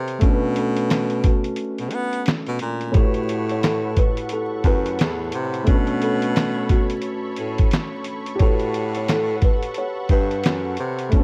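A soft, intimate felt-muted upright piano with cassette-tape haze and a vibrato-rich, jazz-style baritone saxophone carrying the bass open this melancholic, nostalgic lo-fi hip hop excerpt at 88 BPM with a swung 16th feel, joined by an up-front, compressed sampler drum kit with 12-bit grit, a thumpy kick, fat snare, handclaps and hi-hat, then a woody, fingertip-plucked kalimba melody through analog delay from 0.6 seconds and a lush, detuned sawtooth unison pad with chorus from 2.9 seconds, over Bm9 and A13 chords in a dark small-room mix dusted with vinyl crackle.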